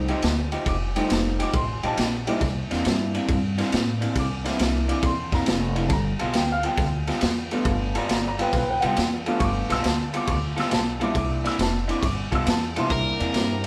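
A swaggering, rollicking electric blues shuffle at 137 BPM in C mixolydian, cut from a longer piece, with a band playing live together in a stone room over F9, C9 and G9 chords. A mellow, dark upright piano comps beside a growly pizzicato upright bass, while a lo-fi, slightly broken-up electric guitar through a small old amp plays the riff with spring reverb, and a gritty, saturated breakbeat kit sits up front with a tight kick, ride cymbal and snare. At 12.9 s an overdriven lead guitar cuts in on Bb4.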